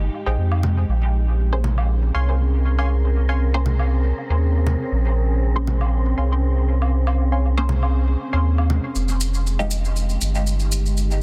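A round, up-front sub bass anchors this deep, hypnotic dub techno excerpt at 119 BPM, holding under a dark, slow-blooming pad with chorus and built-in reverb as the chords move from Fm9 to Bbm9 and back to Fm9 at 9.0 seconds. Two muted, filter-plucked chord stabs drift through dub echo, the lower one shaded with phaser and the higher one with chorus, while woodblock and congas add dub-echoed percussion over a light sixteenth-note swing and an airy, breathy wind-like texture sits in the background. Grainy maracas take over the percussion from 9.0 seconds in a dense, heavily limited modern master.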